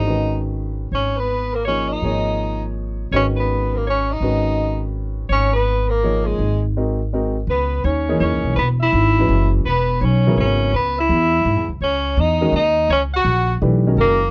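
Searching and intense, this modal jazz passage, cut from a longer piece, swings in 3/4 at 165 BPM, sitting in G# dorian before shifting to C# dorian at 7.5 s. Both saxophones have a breathy, vintage jazz tone with scooped notes: the tenor carries the melody up front, while the alto plays a softer second line with a hushed subtone, set further back in the mix. An upright piano supplies woody accompaniment underneath, moving from G#m11 and G#7 into C#m7 and a closing F#add9. The acoustic upright bass is plucked on gut strings, giving a dark, thumpy pulse that sits forward alongside the tenor. Close, detailed microphones and very little reverb make the sound intimate and immediate.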